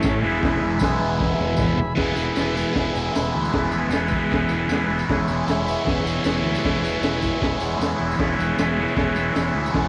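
Rowdy and raw, this short garage rock cut charges along at 154 BPM in a straight 4/4, centered on an E major chord. Up front, a bright, double-tracked stack guitar hammers out an overdriven, picked riff colored by phaser. A buzzy vintage combo organ holds sustained chords with light vibrato, and a round, fuzzed fingered bass sits underneath. The crunchy breakbeat kit sounds saturated and gritty, with a punchy kick, a high-tuned snare and dark cymbals. A jingly tambourine rides in the background. A drum fill and an organ fill run into the new section at 2.0 seconds, and the whole track carries the haze of a home cassette recording with light reverb.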